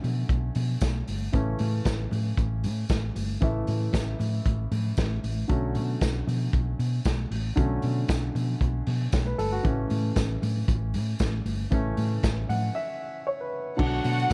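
A straight 4/4 disco groove at 116 BPM, glamorous and danceable, rides on a muffled, lo-fi vintage drum kit with a punchy kick and dark cymbals, a round, hollow-body electric bass up front, a natural-toned baby grand piano accompanying over Bm7 and A, very quiet high-tuned congas and a jingly tambourine entering at 0.8 seconds in the background, while a piano fill from 12.2 seconds leads into a break and a rich, bowed violin section arrives at 13.8 seconds in this dark, reverberant excerpt.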